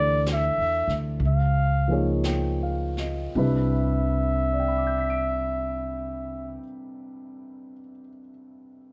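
A breathy trumpet with scooped notes and a smooth top carries the melody of this tender, intimate jazz ballad in C major, swung at 52-66 BPM and slowing through its opening, over a dark, mellow concert grand piano that plays on to 8.9 seconds, a woody, thumpy pizzicato upright bass on gut strings, and a brushed kit with a high-tuned snare that enters at 0.3 seconds and stops at 4.3, all set in a dry room and colored by worn, warbling cassette tape with pitch drift in this fragment cut from a longer piece.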